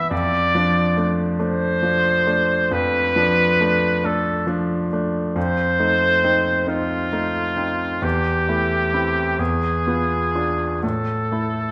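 A recital hall's reverb, with a decay of about 1.3 seconds, surrounds this short excerpt of a romantic classical duo for trumpet and concert grand piano. The trumpet carries the melody between F4 and D5 with a clear, classical tone and a light vibrato, sounding distant and roomy even as it sits up front in the mix. The grand piano accompanies from E2 up to F4, its smooth, vintage character anchored by a deep bass. The music moves slowly in 12/8, at 41 to 47 beats per minute counted in dotted quarters, with a rubato feel that lends it a solemn, yearning mood. The harmony passes from Dm/F through F7 and Am/E to a tense E7b9 at 9.4 seconds, then settles on a bare A5 at 10.8 seconds, just before the clip ends at 11.7 seconds.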